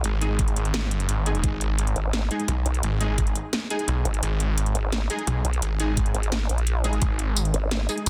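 A driving, straight 4/4 pulse at 172 BPM anchors this dark, technical drum and bass passage in G# minor, cut from a longer piece and carrying a tense, futuristic mood. The drum kit runs throughout with a cracking snare, metallic hi-hats and tambourine, its layered, tape-tinged sound re-recorded in a small room, while a knocking electronic kick joins at 0.4 seconds and returns at 6.0 seconds. Two bass parts sit up front in the low register: a snarling, growling sawtooth bass with detuned unison voices, distortion and a moving notch, paired with a nasal, wobbling bass shaped by a formant filter, saturation and chorus. Above them, a bold, punchy stab in the manner of an orchestra hit punctuates the groove, its full-bodied detuned layers and noise coloured by cassette tape, built-in reverb and dub echo. The whole passage sits in a digital ambience with a dense, heavily limited modern master.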